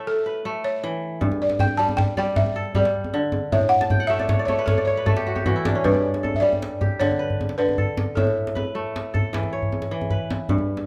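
A woody, buzzing balafon opens this joyful West African piece, struck with soft rubber mallets and carrying the melody in a solo passage over a bright, ringing kora that fingerpicks arpeggios from its low register up high. At 1.2 seconds a deep, saturated djembe joins, played with soft hands and sitting up front alongside the kora in a compressed sound. The groove moves at 104 beats per minute in a straight 12/8, with the harmony shifting back and forth between A and G. Beginning at 3.8 seconds the crisp kora adds a fill, and the music then moves into a new section where the balafon's dry tone stops at 9.3 seconds. The kora and djembe carry on to the end of this cut from a longer work, and the whole ensemble sits in a moderate recital-hall reverb that lends a warm glow.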